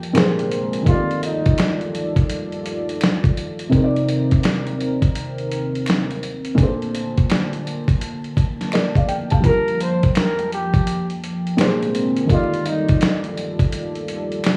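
A breathy, whispered flugelhorn with analog delay drifts in at 0.9 s and returns at 9.5 s for a brief jazz-style solo in this reflective, melancholic lo-fi hip hop excerpt, floating over soft felt-muted upright piano accompaniment, a deep detuned analog pad with chorus, a gritty, compressed sampler-style drum kit with a thumpy kick up front, and very quiet finger snaps, all wrapped in vinyl crackle and light reverb.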